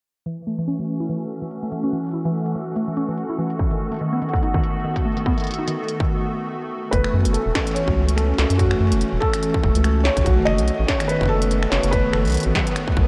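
The rhythm runs at 144 BPM in 4/4 with a lightly swung sixteenth-note feel: an industrial drum kit of finger snaps, crisp hats and a clanging snare ticks through a delay, and a distorted electronic kick joins at 3.6 seconds. This is an eerie, intricate IDM passage cut from a longer piece, moving between F#m7 and B7 under a dreamy, reverb-soaked haze with a low-pass filter over the mix. A hollow, flute-like pad holds warbling vintage chords up front with ensemble chorus, while a woody, mallet-like FM pluck spins arpeggios through chorus, cassette tape color and delay, a filter sweep shaping it until a brief break at 6.1 seconds. Sitting in the background, a reversed, granular swelling texture adds a detuned shimmer on a single high note. From 6.9 seconds a felt-muted upright piano carries an intimate, mellow melody with audible action noise and delay, and a round analog bass settles deep underneath, dark and up front.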